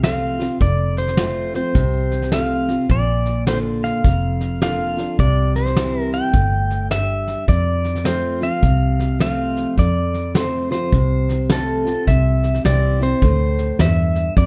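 A dark, lightly reverberant production frames this short fragment of swung honky-tonk and classic country, heartfelt and down-home in mood. A twangy, compressed pedal steel guitar carries the melody with fingerpicked slides and volume swells over a bright, full-bodied dreadnought acoustic guitar, picked on fresh strings with a touch of finger squeak. Beneath them, a round, foam-muted vintage electric bass and a soft brush kit with a fat snare and tight kick sit a little louder than the guitars, the drums roomy yet up front.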